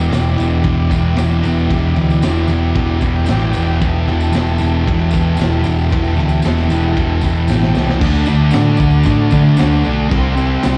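Heard through a venue's PA on cassette tape with club reverb, this swaggering, menacing garage rock excerpt at 114 BPM in E minor sets a thick, double-tracked fuzz guitar riff up front over a round, overdriven hollow-body picked bass. A buzzy combo organ holds heavy-vibrato chords and adds fills at 2.8 and 7.0 seconds, while a crunchy, dark-cymballed breakbeat kit and a jingly tambourine sit in the background, the drums rolling a fill just before the Em gives way to D at 8.0 seconds.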